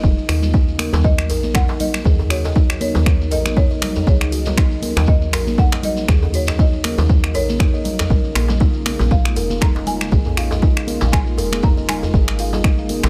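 This afro house cut opens with a punchy, up-front electronic kick and a soft, round FM bass with a woody, dark decay, the bass pumping against the sidechain. Alongside them from the start, a mellow, buzzing kalimba plucks arpeggios through dub echo, and a detuned sawtooth pad holds chorused chords in the background. Ringing congas sit close but low in the mix, while a grainy shekere sounds distant in a large room, and a deep house kit with snaps and dark hats slips in at 0.3 seconds. A tight, cracking djembe with metal rattles follows, and at 1.0 seconds a dry, rustic marimba struck with medium hard mallets carries the melody high above, its boxy tone trailing dub echo. The harmony drifts between Bbm7 and Ebm7 under a lightly swung groove, giving the whole passage an earthy, warm mood in a small room ambience.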